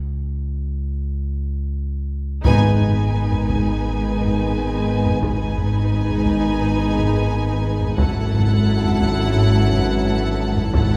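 An eerie, ominous suspense cue at 87 BPM in G# phrygian opens on a very quiet, ringing thumb-plucked harp riff over a deep, punchy saturated sub bass drone, then from 2.4 seconds the full orchestra enters, landing on G#m at 2.5 seconds with a soft-malleted timpani hit, very quiet taiko, a rich close chamber violin melody, expressive viola accompaniment, a lush background symphonic violin line, distant cellos and a dark double bass with portamento, joined by mellow French horn and trombone chords in a wet scoring-stage reverb, shifting to F#m7/G# at 8.0 seconds in this fragment cut from a longer piece.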